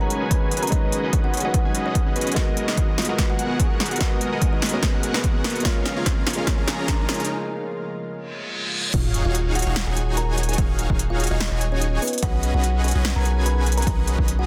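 A huge, detuned supersaw riff pumps through this dreamy, bittersweet future bass piece in Eb minor at 146 BPM, riding a swung half-time groove over a deep, sine 808 bass and a punchy, up-front electronic kick with crisp hats, snare and crash. A woody, ringing kalimba carries the melody, while a felt-muted upright piano with audible action noise and a breathy, chorused pad sit in the background, each ducking with sidechain pumping. A riser, reverse cymbal and sub drop enter at 5.8 seconds and carry on through the drop at 8.9 seconds, when the pad drops out and the piano follows at 9.0 seconds, all set in light reverb under a dense, heavily limited master.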